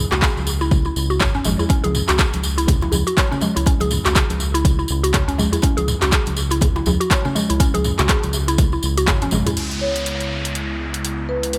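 Driving and earthy, this afro house excerpt moves at 122 BPM in C# minor with a loose sixteenth-note swing, sitting on a C#m chord before shifting to C#m7 at 9.6 seconds. An overdriven electronic kick sits up front, joined by a layered deep house kit of handclaps, metallic hats, toms and crash cymbal that carries the same grit and large-room sound, ending its first stretch with a drum fill just before the change. Congas played with hard hands and a tight, cracking djembe fill the background with acoustic texture, and a jingly tambourine sits close. A round, dark analog bass pumps beneath a woody FM pluck whose warbling arpeggios are smeared by chorus and digital delay. The kick drops out around 9.2 seconds and the hand percussion soon after. At 9.6 seconds the pluck falls away as a smooth, detuned analog pad swells in with soft chorus, a downlifter sweeps through up front, and a soft-mallet marimba with rosewood bars adds a mellow delayed melody over the closing seconds. 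A light reverb ties the mix together.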